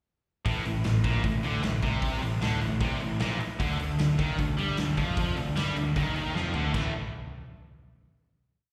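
Hard rock in A minor at 153 BPM, this short, complete piece sounds menacing and heavy, captured as a live gig through the venue's PA with a moderate club reverb. Two tight, distorted guitars play a bright, picked single-note riff with slapback echo from 0.5 seconds, one sitting in the background, while a fuzz-drenched, overdriven electric bass sits up front, driving eighth notes that double the guitar riff. A big acoustic rock drum kit with a punchy kick, medium-tuned snare and bright cymbals lays down a big groove in a natural, roomy sound, closing with a fill at 6.3 seconds. Beneath it all, a very quiet tonewheel organ holds a fat, clean pad of sustained chords, its slow rotary speaker, vibrato and key click adding texture. The riff moves from A minor to D5 before the band lands on a final A5 chord at 6.7 seconds.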